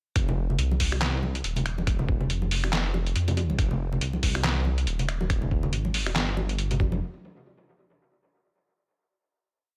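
A dark, detuned saw bass rumbles up front from 0.2 s, deep and saturated with a beating, sustained tone, playing chopped phrases between Eb1 and F2 in F minor over a swung, half-time deep dubstep groove at 140 BPM. A thumpy, pitched-down electronic kick and a gritty sampler-style kit of snaps, claps, hi-hats and a medium-tuned snare drive the beat, while soft-handed congas and bongos echo in a digital ambience. The meditative, shadowy piece stays in its drop until 7.0 s, then closes on a final hit.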